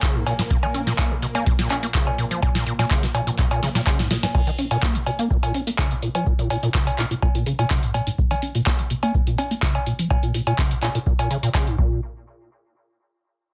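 A driving, trippy acid house groove at 125 BPM in Bb minor opens on a drop, with a lush string machine holding sustained Bb minor chords in the background, its vintage sawtooth tone thickened by ensemble chorus and sidechain pumping until 4.3 seconds. Underneath, a deep, rubbery acid bass riff with a resonant filter pluck and dark overdrive spans Ab2 to Db4 and carries on to about 12 seconds. A dry, deep electronic kick anchors the beat, while a booming analog drum machine sits up front with a crisp snare, metallic hi-hats, handclaps, shaker, cowbell and crash cymbal, tape-warm and given a short room sound on the snare, clap and hats. A drum fill from 4.0 to 4.3 seconds leads out of the opening drop into the bass-and-drums stretch that follows. The harmony stays on Bb minor until the drums and bass fall away near 12 seconds, and the dense, heavily limited master sits in a moderate small room.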